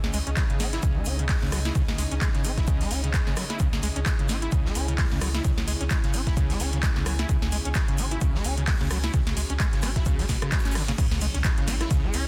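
A dense, heavily limited mix with a digital ambience carries this trippy, gritty acid house excerpt at 130 BPM in C# minor, where a squelchy, resonant, overdriven acid bass riff with filter sweeps and tape echo rides over a round sine sub bass, a punchy electronic kick entering at 0.4 s, a booming analog drum machine with crisp snare, metallic hats, handclaps and cymbals, and a saturated, oversized low-tuned drum kit of hi-hat, shaker and snare in the background, while a warbling, nostalgic tape-like pad holds a C#m7 chord beneath an airy, breathy pad, the pads and basses pumping to the sidechain until a very quiet impact marks the drop at 11.0 s.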